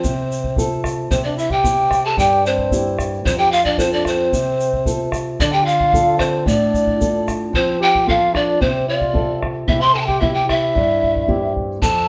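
A breathy bamboo pan flute with chiff and vibrato carries the melody up front in this melancholic yet festive Andean folk excerpt, joined by a mellow flugelhorn second line, thumb-plucked nylon-string guitar with audible finger squeak, a deep, dark bombo and a grainy tube shaker that drops out at 7.4 seconds and returns briefly at 11.8, the ensemble playing live in one room with a wet large-studio reverb.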